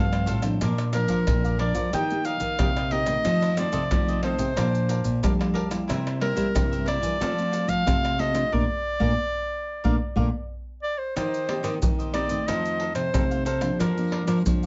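A moderate studio reverb and a softened top end frame this playful, festive excerpt of samba and choro in a straight 4/4 at 91 BPM, moving from B-flat major to E-flat major at 11.2 seconds. A close-miked, up-front clarinet carries the classical-style melody over crisp picked cavaquinho and two thumb-plucked nylon-string guitars, one comping chords and the other, with fresh strings, holding the bass line. Maracas, pandeiro, tamborim and a deep surdo, played with hard hands in a small room, drive the groove, and the band hits an accent from 8.5 seconds while a drum fill at 10.3 seconds leads into the new key.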